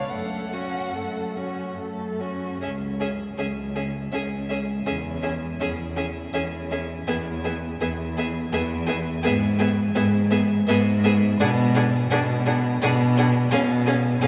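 Drenched in a cathedral-like reverb with a 5.1-second decay, this short excerpt from a slow, solemn and elegiac string-quartet movement in C# minor moves at 70-87 BPM in a rubato 3/4. A smooth, even cello sits up front with a rich, close bass line, while a distant viola and second violin add expressive vibrato and portamento beneath a dark, woody first violin singing the melody high above. The harmony drifts from F#m through C#m and E toward a rootless G#dim/B and a final C#7(no3)/B near 13.5 seconds.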